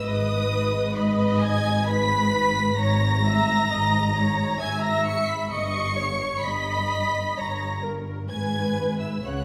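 Elegiac and melancholic, this slow romantic movement for string orchestra unfolds at 65 BPM in 3/4 with a rubato feel, set in G# minor and cut from a longer piece. The violins carry a high, lush melody reaching up to C#7, while a second violin line with a focused tone and smooth top sits beneath it. The violas fill in the accompaniment with an even, bowed sound, and the cellos and double basses share the bass, the cellos expressive and the double basses woody. All five sections play throughout the 9.4 seconds, their vibrato giving the ensemble a warm, singing quality. The harmony moves from G# minor to D#7/G at 5.5 seconds before settling back on G# minor at 8.3 seconds, all within a moderate scoring-stage reverb that lends the strings a spacious, symphonic bloom.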